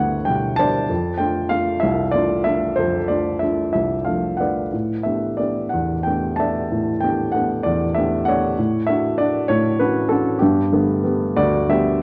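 Classical solo piano in a calm, peaceful 6/8 with free rubato, where a dark, mellow baby grand sits up front with audible action noise and short sustain, its chords drifting from G6 to Gmaj9 over a moderate recital-hall reverb and the warbly pitch drift of worn old cassette tape in this brief fragment of a longer piece.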